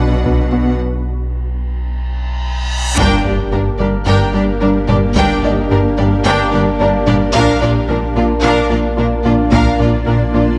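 Vast and brooding, this hybrid orchestral and electronic film score excerpt in G minor moves at 110 BPM in a straight 4/4, with a smooth, vibrato-laden violin section carrying the melody over a more brilliant, intense second violin line, lush viola and very quiet cello and double bass sections, mellow French horns holding sustained chords, a cloudy, evolving granular pad, a round analog pluck tracing arpeggios, a rubbery, hollow square-wave bass riff, a deep, clean sine sub bass and an intimate concert grand piano adding texture, while a hard-sticked taiko ensemble drives from the background, dropping into a break before a reverse cymbal from 2.2 seconds leads into an electronic impact and band accent at 3.0 seconds, all set in a moderate scoring-stage reverb.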